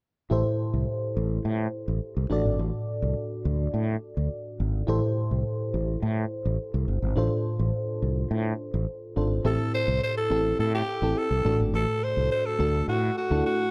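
A mellow FM electric piano with a soft, round chorus-treated tone and a growly, punchy fretless electric bass open this urgent, dramatic 1980s-style pop excerpt, moving through Am7, D and Dm7/A in light studio reverb until a raspy, gritty alto saxophone with vibrato and scooped notes takes the melody at 9.5 seconds.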